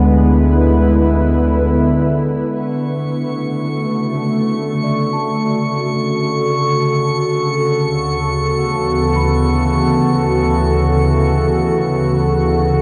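A warbly, tape-like pad sits up front, holding detuned, nostalgic chords through chorus and shimmer reverb in this peaceful ambient piece in free time and D lydian, moving from E7/D to Dmaj7 at 2.5 seconds and A69/D at 7.8 seconds. A round, deep analog bass anchors the opening until 2.4 seconds, while a very quiet celesta plays delicate, bell-like arpeggios throughout. From 3.0 seconds a glassy texture of drifting overtones joins, all set in a huge, wet reverb with a dark, warm production in this fragment from a longer piece.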